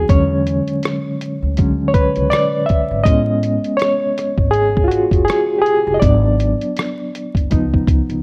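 A swung 81 BPM lo-fi hip hop groove in 4/4 sets a melancholic, hazy mood in this short excerpt, where a muffled, compressed sampler-style drum kit of thumpy kick, hi-hat and rim click sits up front beside a woody pizzicato upright bass, while a barky, reedy electric piano, lightly overdriven with fast tremolo and cassette-tape softening, takes the lead from 0.0 seconds over E13, Amaj9, G#m7b5 and C#7 chords in a small room with rough demo-style vinyl crackle.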